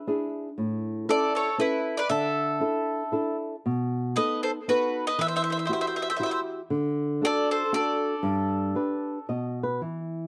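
A bright, up-front bowl-back mandolin carries the melody of this romantic, wistful Italian folk serenade in 3/4, its picked double strings touched with slapback echo, while a woody second mandolin, also echoed, plays a second line. A warm, thumb-plucked flamenco guitar sits up front as accompaniment, moving with a rubato feel at 117 BPM in G major through E7, Dsus2 and Emadd9 before settling on G, all in a dry, outdoor sound. The mandolins stop at 9.3 seconds, a nylon-string guitar fill runs from 9.0 to 9.8 seconds, and the flamenco guitar carries on to the end of this brief cut from a longer piece.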